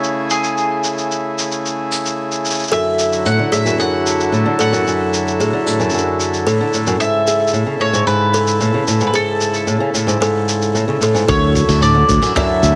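Pastoral and playful, this folktronica excerpt moves at 112 BPM in a straight 4/4 in A major, drifting between Amaj7 and Dadd9. A bowl-back mandolin carries the melody on picked double strings, roughened by vintage 12-bit sampler grit and a digital delay. Beneath it sit reedy, full accordion chords with a dry tuning and a muffled, pitched-down, tape-warm lo-fi drum kit of finger snaps, hi-hat, shaker and toms, softened by low-pass filtering and studio reverb. At 2.7 seconds a buzzing kalimba with a woody, ringing thumbnail pluck adds a second line, and a boxy, fingerpicked swing-style acoustic guitar plays up-front arpeggios, both touched with digital delay. At 11.3 seconds a bright, growly electric bass enters prominently on a low D2 alongside a thumpy, compressed electronic kick bathed in studio reverb, all framed by light reverb and small room ambience.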